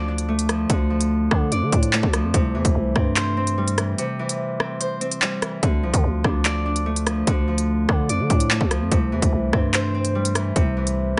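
A half-time drill groove at 146 BPM in 4/4 drives this cold, tense hip hop fragment in D minor, with an up-front electronic kit entering at 0.2 seconds: hard-clipped kick, crisp hi-hats, handclaps and rim clicks. A bright, ringing Celtic harp, fingerpicked and placed up front, moves between D minor and C over a growling, buzzy 808-style bass with a fast attack and decaying tail. A break arrives at 4.0 seconds before the pattern resumes, all set in light reverb with a dark top end.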